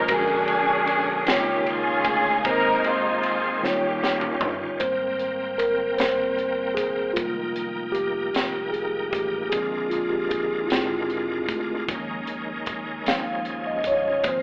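A mellow, clean tine electric piano sits up front throughout this uplifting slow gospel excerpt in 6/8, taking a solo from 4.8 seconds after a veiled, muted string section carries the opening melody with lush vibrato and soft bowed attacks. A bright tonewheel organ holds full, shouting chords with key click and slow rotary speaker, while a fingered electric bass stays warm and in the background. A crisp fusion kit with a punchy kick and high-tuned snare plays a fill just before the solo, all set in a large studio room with a telephone-filtered, hopeful sound.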